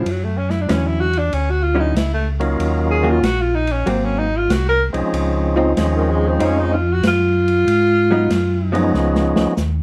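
A swinging, bluesy soul jazz organ trio fragment opens with a breathy, subtoned tenor saxophone solo over picked, dark hollow-body guitar accompaniment and a round, mellow tonewheel organ bass line turning through a slow rotary speaker, while a small-room jazz kit of hi-hat, dark ride cymbal and medium-tuned snare swings the 8ths; at 2.4 s a second, lightly overdriven organ with percussive third-harmonic attack and key click adds a melody, and after the saxophone and guitar stop at 8.9 s a drum fill closes the fragment in a moderate small-room reverb.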